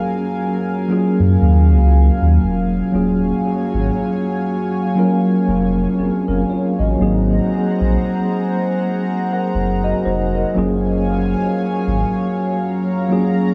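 A mellow tine electric piano and a shimmering, chorused pulse-width pad open this moody, late-night contemporary R&B fragment together, moving through Gbmaj9, Ebm11 and Ab9 before returning to Gbmaj9 at 10.6 seconds. The tempo is a slow 59 BPM in 4/4, with a gentle swing on the sixteenths. The electric piano sits up front with a clean tone heard through its built-in speakers, trailed by dub echo. Behind it, the pad's detuned, retro character and slow attack hold sustained chords. A round, sine-like sub bass enters at 1.2 seconds, deep and up front, and stops at 12.0 seconds. Light digital ambience and studio reverb give the mix an echo-heavy, nocturnal space.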